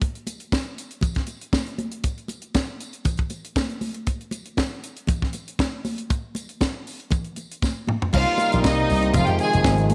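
A tight, dry funk drum kit with bright cymbals, a high-tuned snare and a tight kick opens this sultry, glamorous disco excerpt in C minor at 118 BPM together with high-tuned, hard-handed congas, soon joined by a jingly tambourine, both percussion parts sitting in the background. After a drum fill from 7.6 to 8.1 seconds, a growly, punchy slap bass with an envelope filter enters alongside a lush, biting violin section carrying a second line and a mellow, close-miked French horn section holding sustained chords over Cm7 and Fm7. A moderate echo chamber reverb gives the short passage a polished studio sheen.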